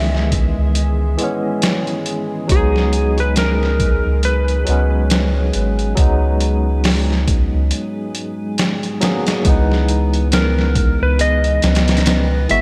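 Dark and cinematic, this slow trip hop excerpt moves at 69 BPM in 4/4 with a swung sixteenth-note feel, sitting in C# dorian and shifting between C#m7 and G#m7 harmony. A clean lap steel guitar carries the melody with a dusky slide tone touched by tape echo, while a barky tine electric piano, lightly overdriven through a combo amp with tremolo and tape echo, supplies bright accompaniment. Beneath them, a deep, moody ambient pad holds sustained chords in the background, its detuned sawtooth layers softened by chorus and reverb and roughened with vintage 12-bit sampler grit. A soft, round dub sub bass sits up front alongside a gritty, pitched-down sampler-style drum kit of thumpy kick, medium-tuned snare and hi-hat, compressed and treated with gated reverb. A break runs from 7.7 to 9.5 seconds; near its end, at 9.4 seconds, a mellow, clean electric guitar enters with background arpeggios colored by subtle chorus and tape echo, and the music returns to C#m7 at 9.5 seconds, all framed by bright 1980s-style digital production.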